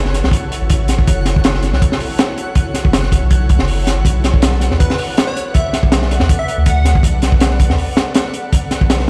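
A crunchy breakbeat kit drives this dark, nostalgic drum and bass and jungle excerpt at 161 BPM in 4/4, its 16ths lightly swung, with a punchy kick, a high-tuned snare and hi-hat sitting up front in a gritty, saturated tone with a rolled-off top. Beneath it a deep, thick sub bass holds sustained notes between F#1 and E2, while an ethereal, airy pad with a warbling, detuned vintage character and ensemble chorus sustains chords that move from F#m7 to Bm7 at 4.1 seconds. A twinkling granular texture sparkles on F#5 in the background, carrying an octave-up shimmer and its own reverb. From 4.8 to 7.0 seconds a catchy, plucky unison lead appears between B4 and F#5, treated with vibrato, a moving notch, cassette tape colour and dub echo. The whole mix sounds as if played on a big sound system in a bare stone room, with vinyl crackle adding to its nostalgic grain.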